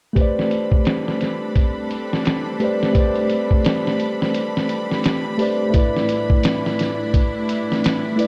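Dark, lightly reverberant production frames this melancholic, cinematic trip hop excerpt at 86 BPM with a swung 16th-note feel in A minor, where a mellow tine electric piano, up front with harmonic tremolo, gritty 12-bit sampler texture, tape echo and a filter sweep, plays accompaniment over Am11 shifting to G6/A at 5.7 seconds, while a lush, bowed symphonic string section holds smooth vibrato chords underneath and a dusty, compressed sampler-style drum kit with a thumpy kick, fat snare and low-pass-filtered hi-hat, re-recorded in a large room, sits prominently in the mix.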